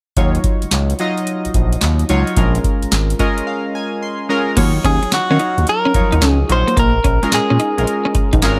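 Bouncy and slick, this new jack swing excerpt at 109 BPM in E-flat minor swings its sixteenths over a booming analog drum machine with a deep kick, crisp snare, handclaps and metallic hats, while a smooth gliding synth bass and detuned, ring-modulated analog keys with chorus trace Ebm9 and Bbm7 in a dry, up-front mix, a keys fill leading into a break at 3.5 seconds before a clean electric guitar riff with tube saturation and lush chorus arrives at 4.6 seconds and a compressed, direct-recorded clean guitar melody follows at 4.9 seconds.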